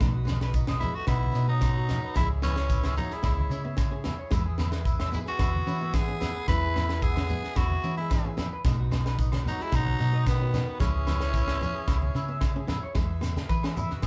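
Highlife guitar band excerpt at 111 BPM in E major with a sunny, carefree mood, where a raspy, gritty tenor saxophone carries the melody from 0.8 to 12.4 seconds over a bright trombone second line with scooped notes, a round, punchy hollow-body bass and a tight funk drum kit with a high-tuned snare up front, while a fingerpicked nylon-string guitar, a reedy accordion, twangy clean electric guitar arpeggios with spring reverb that take a short solo at 13.0 seconds, and background congas, ringing agogo bells and grainy shekere fill a live small room as the chords cycle through B, C#m and E.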